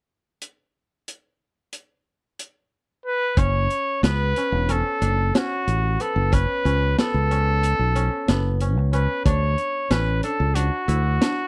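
A clear, vintage-toned trumpet carries the melody in this brooding, tense progressive instrumental, taken from a longer piece and set in an uneven 9/8 at 183 BPM counted in eighths. A drum kit of hi-hat, kick and snare opens alone from 0.4 seconds with a medium-tuned snare, a punchy kick and a rolled-off top, sitting mid-forward in a studio room. The trumpet enters at 3.1 seconds with a classical-style solo line placed up front. At 3.4 seconds a growly, direct fingered electric bass joins low and forward, while a fingerpicked kora adds mellow, ringing, crisp arpeggios further back. The harmony rests on F# minor before moving to D near the close, and the whole recording has the dry, close feel of a 1970s studio with little reverb.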